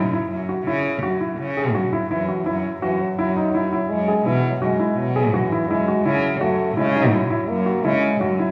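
A baby grand piano and a single bowed cello open this short chamber excerpt together, the piano rolling arpeggios in a close middle register while the cello holds the bass beneath. The piano sounds natural and up front, its notes decaying quickly, and the cello is rich and pure, played sul tasto with a soft attack that gives it a floating quality. At 2.1 seconds a solo French horn enters with a second line in its low-middle range, warm and classical in style, colored by vibrato. The music moves in an uneven five-beat metre with a straight feel, and its harmony shifts from suspended to dominant-seventh colors over a steady F# foundation, lending a restless, pensive mood. A lush recital-hall reverb surrounds the trio, placing it in the resonant space of a church or concert hall until the fragment breaks off at 8.5 seconds.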